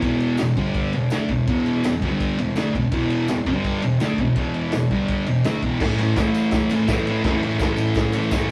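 Swaggering and raw, this short cut from a longer garage rock piece drives along at 166 BPM in a straight 4/4, led by a thick, double-tracked fuzz guitar riff that sits up front, moving between E5 and G5 power chords before shifting to A5 at 5.8 seconds. Underneath, a vintage acoustic drum kit with a punchy kick, medium-tuned snare, ride and crash has a rolled-off top, while a jingly tambourine enters at 0.4 seconds and stays in the background. The rough rehearsal-room sound carries tube saturation and a wet small-room reverb.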